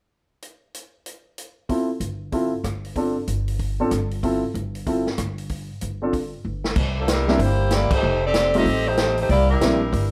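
Lightly reverberant, this joyful big band swing excerpt opens on a drum kit with a punchy kick, hi-hat and rim clicks at 0.4 seconds, soon joined by an up-front, natural baby grand piano and a woody pizzicato upright bass, until a drum fill ushers in a present saxophone section with vibrato, soft in attack and bathed in plate reverb, that takes the melody at 7.0 seconds, with a band accent landing at 7.9 seconds.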